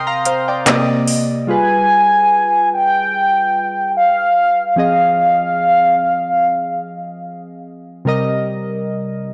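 Detuned, chorused analog keys open this longing, late-night contemporary R&B passage, joined at 0.3 s by a brief burst of overdriven electronic handclaps and metallic hi-hats, before a mellow, horn-like synth lead with vibrato and a wave-folded edge sings from 1.5 s over G7b9 and Fm7, the whole blown-out recording bathed in lush hall reverb.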